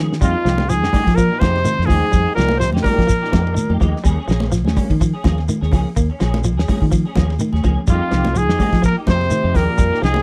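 Afrobeat with a hypnotic, defiant mood, cut from a longer piece, opens on a drum fill from a damped 70s kit with a fat snare and tight kick, joined by a dark, round fingered electric bass, grainy shekere and bright, high-tuned congas sitting distant in the background. Two clean semi-hollow electric guitars play alongside, one playing bright arpeggios through analog chorus and the other, warmer, adding stabs through ensemble chorus. A clear, up-front trumpet carries the melody over a very quiet, breathy alto saxophone and a punchy trombone section. The saxophone drops out at 3.7 seconds and the trumpet and trombones at 3.8 seconds, and all three return at 7.9 seconds, in a dry, close 1970s-style studio sound with small room ambience.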